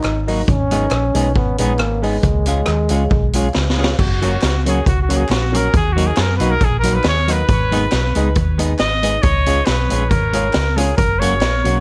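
A lightly reverberant, vintage-toned ska excerpt at 137 BPM in F# major with a gentle swing, joyful and bouncy, built on a round, amped hollow-body electric bass and a street-band drum kit with a high-tuned snare, boomy kick, dark cymbals and rim clicks, plus a very quiet, band-limited group handclap. A mellow, close-miked trombone carries the melody with light vibrato and tape echo until 3.5 seconds, while a clean semi-hollow electric guitar with tremolo and a woody, boxy upright piano with stabs in the background fill out the accompaniment. After a drum fill, a punchy trumpet takes over up front with a solo from 4.0 seconds, its tape echo trailing as the chords move from F# through D#m, G#m and C#.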